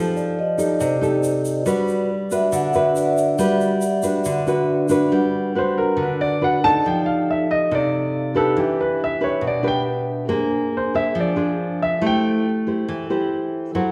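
Breezy and relaxed, this bossa nova excerpt moves in a straight 4/4 feel and is cut from a longer piece. A thumb-plucked nylon-string guitar, classical in tone and up front, carries the accompaniment throughout, joined by a mellow vibraphone played with soft mallets whose metallic, ringing notes shimmer with a slow motor vibrato. The vibraphone takes the opening solo while a grainy, bright tube shaker, compressed and saturated, adds percussion until 5.1 seconds. A warm baby grand piano then takes the melody from 5.6 seconds, natural and close. The harmony drifts through rich chords such as F9, Gmaj7, Em7 and Bb9, and a wet recital-hall reverb lends the recording the spacious ring of a church or concert hall.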